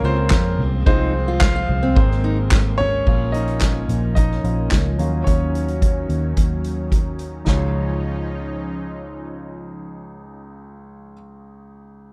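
Light reverb gives this warm, anthemic piano-driven pop excerpt in Db major at 109 BPM an airy sheen, with an intimate concert grand carrying the lead through its first 7.5 seconds, its action noise audible and its deep bass ringing with long sustain. A lush, detuned unison pad holds slow-attack chords beneath, while a fingerpicked parlour acoustic guitar plays a brief riff only until 2.4 seconds. A dark, round, foam-muted electric bass and an up-front soft-mallet drum kit with punchy kick, handclaps and roomy cymbals drive the groove until the drums stop at 7.6 seconds, leaving the piano, pad and bass to settle onto a Dbadd9 chord.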